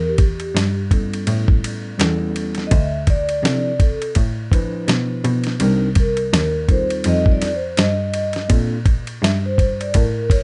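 Smoky and mellow, this short jazz-hop cut from a longer piece moves at 83 BPM in 4/4 with a swung 16th-note feel, as a soft-mallet vibraphone carries a ringing, metallic solo melody with slow motor vibrato over a rich, bowed cello bass line that glides with expressive vibrato and portamento. A gritty, compressed sampler-style drum kit sits up front from 0.2 seconds, with a thumpy kick, medium-tuned snare, hi-hat and ride. A clean, direct tine electric piano adds chords from 0.9 to 8.8 seconds through Em, Dm9, Cm7, F9 and Bbmaj9, all in a dry mix with a dull, rolled-off top end.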